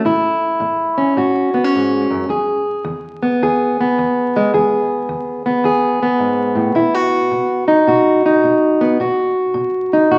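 A fingerpicked, plugged-in steel-string acoustic guitar carries this short blues excerpt alone, sitting up front with a dark, full-bodied jumbo tone and audible finger squeak. The mood is gritty and laid-back, moving at 107 BPM in 4/4 with a swing feel on the eighth notes, in E major. The guitar ranges from E2 up to G#4, and the harmony moves from A to E at 2.3 seconds and on to B at 6.7 seconds. A wet, large studio reverb with a 1.4-second decay surrounds the playing. The sound carries the crackle and worn character of a very old 78 rpm record, and the clip is cut from a longer piece.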